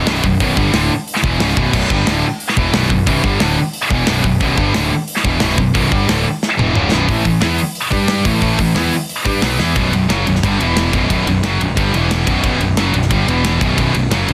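A straight, driving 4/4 pulse from a tight acoustic metal kit with bright cymbals and a soft-clipped kick powers this dark, aggressive heavy metal excerpt, where two picked high-gain electric guitars, one scooped and up front, churn out riffs over a growly, fuzz-overdriven picked bass, moving from a Bm opening through A5 and G5 changes at 7.1 seconds to a Bm and E5 passage from 9.8 seconds, with drum fills marking each shift in a dense, heavily limited master with light reverb.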